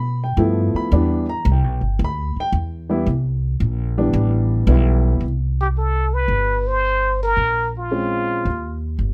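A grand piano and upright bass open together at 0.0 seconds, setting a sophisticated small-group swing in a jazz style, cut from a longer piece. The piano sounds intimate and natural, with its action noise audible in the close, detailed recording. The pizzicato bass on gut strings comes through woody, thumpy and up front. At 5.6 seconds a trumpet with a plunger mute takes the melody, its clear, present tone carrying a wah-wah colour and light vibrato in a jazz solo voice. The harmony moves from G7 to Cmaj9, later passing through Bbm9 before landing on Eb. Little reverb keeps the sound immediate, and the piano drops out at 8.5 seconds, shortly before the trumpet and bass finish.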